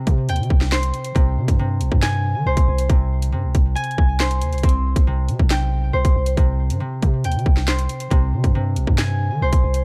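Drill hip hop in a tense, cold half-time feel, where a fingerpicked acoustic concert harp rings out arpeggios through delay over C5 and Abmaj7 chords, a deep, mellow 808-style bass sustains long decaying sine tones, and an up-front electronic kit hits with a hard-clipped kick, sharp snare, handclaps and bright hi-hats, all in a dark, dry production with a faint mains hum.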